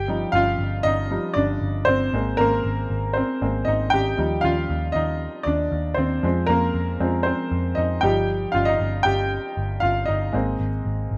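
This rough home demo mix has a light reverb around it and is cut from a longer pop piece. A bright, woody upright piano sits up front and carries a solo across the full 11.2 seconds, its slightly detuned tone and short sustain giving it a natural character from F3 up to G5. Beneath it, a vintage picked electric bass plays low and dark, its foam-muted, amped sound round against the piano's brilliance. The harmony moves through Ebadd9/G, Abadd9, Ebadd9 and Fm before returning to Ebadd9/G and Abadd9, lending the straight groove an anthemic, warm lift.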